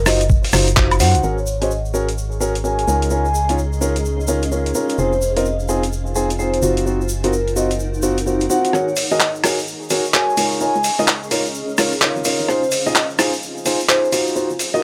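Dark, mellow grand piano stabs sit up front in this skippy, moody two-step garage excerpt, their smooth, long-sustaining chords roughened by vintage 12-bit sampler grit and trailed by analog delay. Beneath them an organ-like FM bass plays hollow, percussive notes with a fast attack that decays. A vibraphone carries the melody with a metallic, ringing tone, slow motor vibrato and its own echo. The swung groove comes from a compressed, pitched-down sampler-style kit of handclaps, hi-hat, rim click and woodblock, joined by a grainy acoustic tube shaker and a thumpy electronic kick heard only from 0.3 to 0.9 seconds. From 2.2 seconds a cloudy, blurred granular pad drifts in the background, pumping against the beat, as the closing stretch becomes a build-up within a dry, gritty small-room sound.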